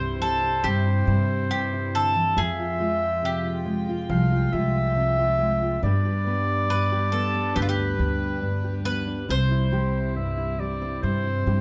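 A bright, picked bowl-back mandolin carries the melody up front in this hopeful acoustic folk piece at 69 BPM in C major, joined by a clear, soft-attack clarinet on a second line, a full-bodied fingerpicked steel-string guitar, a woody pizzicato upright bass and a warm, floating bowed chamber string section in the background, over chords of C, Fmadd9 and G with light reverb.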